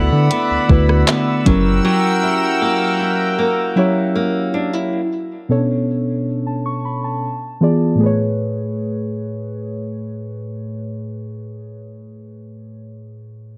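Lightly reverberant and intimate, this romantic, dreamy contemporary R&B fragment moves at 78 BPM in A major, built on muted, felt-like synth keys with a chorused, dark tone that sit up front and carry the accompaniment throughout. A shimmering, retro pulse-width pad holds sustained chords with a sidechain pump, while a boxy flamenco guitar plays fingerpicked arpeggios through delay until 5.3 seconds. A round, deep analog bass and a smooth, electronic R&B kit of soft kick, hi-hat, rim click and handclaps, roughened with vintage 12-bit sampler grit, appear only briefly at the start. Once the pad and guitar drop out, the keys carry on alone to 13.6 seconds over chords moving from D69 through F#7b9, Bm9 and E7b9 to Amaj7.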